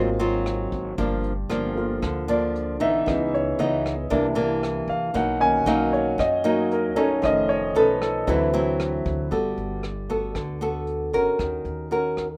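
Relaxed and sunny, this bossa nova excerpt at 115 BPM opens with a natural, up-front grand piano soloing until 9.3 seconds over a small, fingerpicked nylon-string guitar, a woody, thumpy pizzicato upright bass on gut strings, and a dark, smooth brush kit with a punchy kick, hi-hat and rim click, after which the guitar, bass and drums carry on in a rough home demo mix with light reverb.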